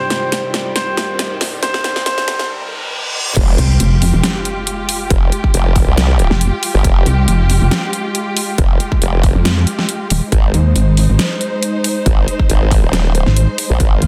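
Swung sixteenths in a half-time 4/4 pulse at 138 BPM drive this heavy, aggressive wobble dubstep excerpt in F minor, opening with a build-up where a bright, brilliant grand piano melody through a low-pass filter and dub echo floats over dark, woody bowed strings with sidechain pumping and a faint ethereal pad, while the dubstep kit's huge snare and bright hats roll through a fill and a riser and reverse cymbal climb in the background. At 3.4 s the drop lands with an impact as a punchy, overdriven electronic kick and two up-front wobble basses take over: one a formant-swept sawtooth growl with chorus and overdrive, the other a pulsing, detuned, saturated pluck. The lush strings carry on over Fmadd9 and then Ab until 14.1 s, all sealed in a dense, heavily limited modern master.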